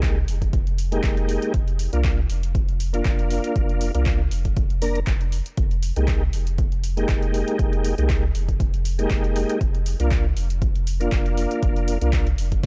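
A punchy, overdriven electronic kick and an analog drum machine's handclaps, hi-hat and snare open this late-night deep house excerpt alongside a deep, round sine sub bass with sidechain pumping, the kick and kit re-recorded in a large room. Clean tonewheel organ stabs, run through a fast rotary speaker with chorus vibrato, sidechain pumping, a low-pass filter and analog delay, move between Fm11 and Bbadd9/F over a lightly swung groove before stopping at 12.3 s. The hypnotic cut has a dry, gritty hardware character set in a digital ambience.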